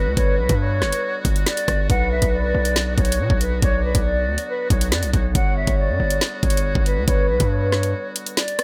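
An airy, distant concert flute carries the melody with vibrato through a low-pass filter and digital delay, over a bright classical-style woodwind section holding sustained chords and a heavy, saturated 808-style bass, setting a cold, tense drill mood at 139 BPM in a half-time feel. From 0.2 seconds an up-front electronic drum kit enters with knocking kick, woody snare, rim clicks and metallic hi-hats, while a velvety synth lead with chorus and delay traces a smooth second line in the background over chords moving from Gmaj7 to Bm and back. At 7.9 seconds the bass and synth drop out for a short break in this dry excerpt cut from a longer piece.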